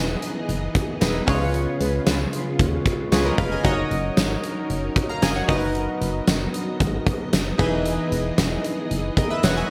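A chorused, glossy synth keys part opens over a silky string machine and a round FM bass, with a huge arena drum kit arriving at 0.2 s, its fat snare and punchy kick bathed in gated reverb, in this dramatic, moody 1980s-style pop passage at 114 BPM. A faint, jingly tambourine joins at 1.0 s, and a bold, warbling analog synth brass adds chorused stabs with digital delay from 1.8 to 3.3 s during a band accent. Chords move from Emaj7 through Db7, Gb6 and Bmaj7/F# back to Emaj7, all framed by a bright digital production with plate reverb.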